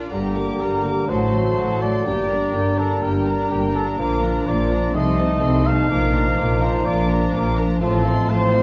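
Graceful and cheerful yet dramatic, this fast romantic orchestral passage at 125 BPM, cut from a longer piece, sets a distant, lush violin section's high melody over a focused second violin line, an intense viola accompaniment, ringing fingerpicked harp arpeggios, mellow trumpet stabs, airy flute and dark clarinet lines, a close-miked bassoon, very quiet clear French horn chords, and a smooth cello and double bass foundation, all moving through minor-key harmony in a reverberant recital hall with a dark, soft-edged sound.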